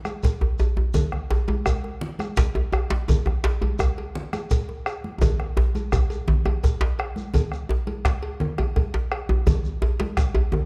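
A deep bombo, bright thin-skinned congas, a metallic, saturated cowbell and a grainy, mellow shekere open this earthy, festive West African drum ensemble in a straight 12/8 at 113 BPM, with two cracking, hard-handed djembes joining by 0.4 s, one tight and dry in the background and the other close and up front, before a drum fill from 5.2 to 7.3 s leads back into the same groove, all set in a dark production with a moderate scoring-stage reverb.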